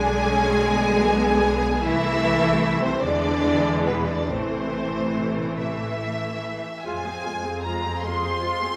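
A wet, reverberant hall sound surrounds this short cut from a slow romantic movement for string orchestra, solemn and elegiac in A minor, moving at around 46-54 BPM in a rubato 6/8. Up front, a rich violin section carries the melody with light vibrato, its tone smooth yet somewhat distant, while a second violin section adds a warm, even second line beneath it. Violas fill in the accompaniment with a clear, focused, lush sound, and the cellos sit in the background as a close, bowed bass voice with their own vibrato. The double basses anchor the bottom with a focused, smooth-topped depth. All five sections play together throughout the 8.8 seconds, moving from a diminished chord through A minor and E7 before the harmony shifts to F minor at 6.8 seconds, opening a new section as the passage is cut off.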